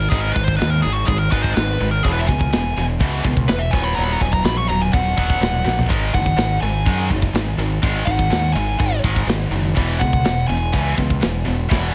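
A straight 4/4 pulse drives this dark, aggressive heavy metal excerpt. A tight acoustic drum kit with bright cymbals and a medium-tuned snare plays fills at 5.7 and 11.7 seconds beneath a double-tracked, high-gain riff guitar and a growling, overdriven fingered bass, both up front, while a nasal lead guitar with a parked wah, overdrive and tape echo solos until 10.9 seconds, all with little reverb.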